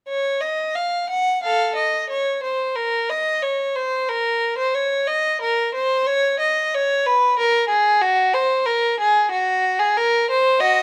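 A baroque-style suite movement for unaccompanied violin, this classical excerpt carries a solemn, introspective mood in B-flat minor. The tempo sits around 91 BPM in 4/4, though the pulse is pliable and rubato throughout. A single bowed violin plays solo from 0.1 to 10.8 seconds, moving between Gb4 and Gb5 with a warm, focused tone, a smooth top and vibrato. The instrument sits up front, heard clearly and close. A moderate stone-room reverb with a 1.2-second decay lends the line an airy, resonant halo, and the passage is cut from a longer piece.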